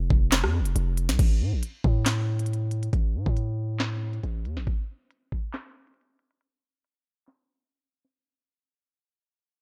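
Drill hip hop at 138 BPM in a half-time feel and A minor, this short cut from a longer track sounds tense and menacing, with a dry, low-pass-filtered sound that fades out from 1.2 seconds onward. An up-front 808-style bass, deep and sine-like with a fast attack and long decay, sustains across a range of F1 to A2 before stopping at 4.7 seconds. An electronic drill kit stays up front throughout, pairing a knocking kick and sharp snare with crisp hi-hats, rim clicks, handclaps and a crash cymbal.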